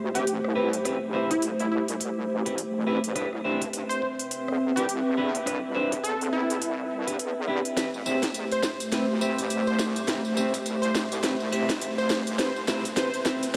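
A dreamy, reverb-soaked mix with vinyl crackle and a huge ambient tail frames this funky, playful glitch hop excerpt in A minor at 104 BPM, swinging on the 16ths as it moves between Am7 and Cmaj7. A nostalgic, lo-fi tape-like pad warbles under chorus and sidechain pumping, while a heavy, detuned wobble bass adds saturated square-wave weight and a bright, punchy unison lead carries the catchy melody through delay. Clean picked electric guitar stabs shimmer with lush chorus and delay, up-front drums bring cracking snare, crisp hats, rim clicks and tambourine into a fill from 7.8 s, and a gritty, pitched-down electronic kick thumps very quietly underneath as the whole passage builds.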